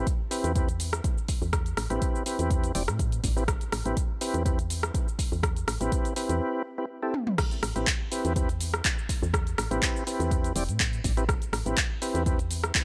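This dry, close-sounding clip, cut from a longer afro house track, runs at 123 BPM in 4/4 with a light swing on the sixteenths and carries a spiritual, earthy mood in A minor, resting on an Am9 chord. A smooth, clean tonewheel organ sits up front playing stabs between C4 and D5, colored by chorus vibrato, sidechain pumping and a digital delay. Underneath, a woody FM bass with a soft, round, fast-attack tone moves between E1 and A2, shaped by sidechain pumping. The deep house drum kit is layered and forward, with dark hi-hats, cabasa, handclaps, rim clicks, toms and crash cymbal, anchored by a deep electronic kick with a tape-warm character that was re-recorded in a small room. A break opens at 6.4 seconds, a drum fill lands at 7.1 seconds, and the groove returns at 7.4 seconds for a second pass of the same section.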